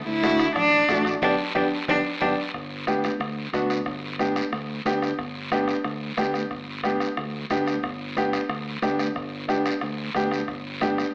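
Heard through a narrow, AM-radio filter and set in a moderate large-studio reverb, this joyful, danceable cumbia is cut from a longer piece. A rich, bowed cello sings the opening melody up front, its soft attack, vibrato and portamento giving it an expressive, single-player voice before it drops out at 2.3 seconds. Beneath it, a fingered electric bass holds down the low end with a dark, round, punchy tone, while a bright upright piano carries the accompaniment with a woody, intimate character, long sustain and audible action noise. The percussion blends a soft-beater bombo heard in a small room, high-tuned congas with thin skins and soft hands sitting in the background, and a raspy, closely captured guiro. The harmony moves from D to G at 1.2 seconds, where the band hits an accent, and at 1.6 seconds the drums and piano both break into fills that lead into the next section.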